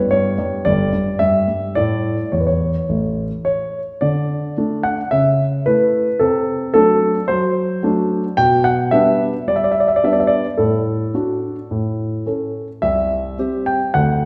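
A warm concert grand piano opens this excerpt alone and carries it throughout, playing a cheerful, elegant classical-period sonatina in D major at 109 BPM in a straight 4/4. The piano sits up front, with a deep bass and short sustain, ranging from G1 to G5 across the full 14.3 seconds. A wet recital hall reverb surrounds it, giving the sound the resonance of a church or concert hall. The opening section moves from Em7/G to A before a second section begins at 4.0 seconds, passing through chords such as A/C#, D7/C, G/B and D/A. The harmony reaches a C chord at 12.8 seconds, and the passage is cut from a longer piece.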